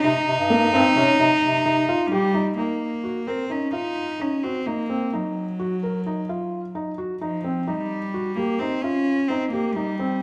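A wet recital-hall reverb surrounds this short excerpt cut from a longer contemporary chamber piece, hypnotic and urgent, moving in a straight 11/8 at 259 BPM in the eighths and centered on Eb dorian. Up front, a rich, floating cello plays the melody bowed sul tasto with a soft attack, while a felt-muted upright piano, intimate and mellow, spins arpeggios alongside it through to the end. A clear bass clarinet with vibrato and a vintage, jazz-style tone carries the bass only until 1.9 seconds, and the harmony shifts from C minor to E-flat minor at 2.6 seconds before a rootless C minor returns at 7.7 seconds.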